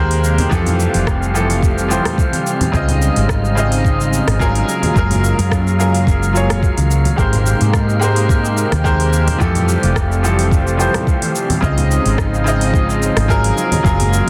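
Blissful and sun-soaked, this sunset chillout fragment rides a gently swung 4/4 groove through a cycle of lush major-ninth chords that turns over twice in about 14 seconds. A bright concert grand piano sits up front with an intimate, worn character, its audible action noise and a vintage 12-bit sampler grit touched with delay. Beneath it, a thick, detuned sawtooth unison pad warbles with chorus and slow-blooming sustained chords, while a dark, breathy wind-like noise layer hovers in the background under its own reverb. A round, hollow-body fretless electric bass with ensemble chorus anchors the low end alongside a soft, tape-toned electronic kick drum that enters at 0.5 seconds. A smooth R&B kit adds metallic hi-hats, rim clicks and shaker, with soft clipping on the snare, and low-tuned, thin-skinned congas played with soft hands sit quietly in a small room, all glued by light reverb and a dense, heavily limited modern master.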